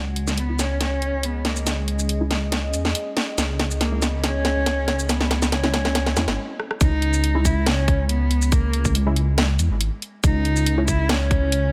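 A rumbling, detuned saw bass anchors this meditative, heavy deep dubstep excerpt in C# dorian at 140 BPM in a half-time feel, with a woody, bowed cello melody trailing dub echo, a cracking garage kit, a mellow phased chord stab under a filter sweep, and a moody chorused pad that ends at 6.3 seconds, before a short break and a drop at 6.8 seconds brings in a tight electronic kick.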